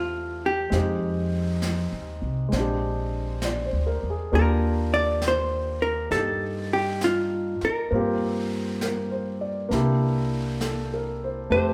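A slow, swung 4/4 jazz ballad at 67 BPM unfolds in an intimate, tender mood, with a dark, clean, compressed hollow-body electric guitar carrying the melody up front over a concert grand piano whose audible action noise and deep bass fill out chords moving from Fm9 through Bb13 to Ebmaj9. A woody, thumpy pizzicato upright bass anchors the low end, and a brushed kit with a medium-tuned snare and hi-hat joins at 0.7 s. The band plays live together in one room, bathed in a moderate large-studio reverb, in this short excerpt cut from a longer piece.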